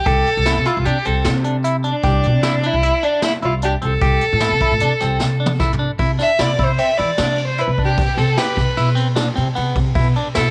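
A rich, vibrato-laden bowed violin and a woody, growly pizzicato upright bass open this intricate, bright progressive instrumental in 5/4, joined at once by twangy, scooped clean electric guitar arpeggios through a phaser and a distant, roomy brushed drum kit with dark cymbals and a boomy kick, whose fill at 5.2 seconds leads into a violin solo from 6.0 seconds, the violin carrying tape echo and the home cassette recording set in a small room with light reverb.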